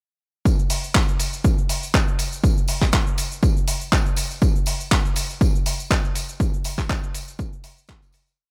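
A four-on-the-floor kick at 121 BPM drives this brief, sensual and cosmic nu-disco drum groove, with a light 16th-note swing and a disco backbeat. The punchy, overdriven electronic kick sits up front beside a gritty, compressed sampler-style soul kit of handclaps, open hi-hat and shaker, while an acoustic tambourine adds disco percussion from the background. The whole piece is a drop from 0.5 seconds, with a fade-out beginning at 5.7 seconds, and the kick stops at 8.0 seconds.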